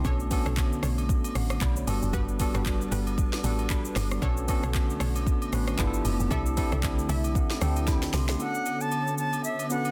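Hypnotic and soulful, this amapiano excerpt moves at 115 BPM in B minor with a swung sixteenth-note feel, built on a punchy, woody log drum bass and an up-front electronic drum kit with deep kick, sharp snare and metallic hats, while distant agogo bells and woodblock sit in the background. A barky, slightly out-of-tune tine electric piano carries Bm9 and Gmaj7 chords through a combo amp, a hollow, detuned pad pumps under sidechain, and a round analog pluck adds chorused stabs with tape echo, with the electric piano playing a fill from 6.8 seconds. At 8.4 seconds the log drum bass drops out as an airy, reedy concert flute with vibrato takes the melody up front, touched by tape echo, all within a dense, heavily limited master.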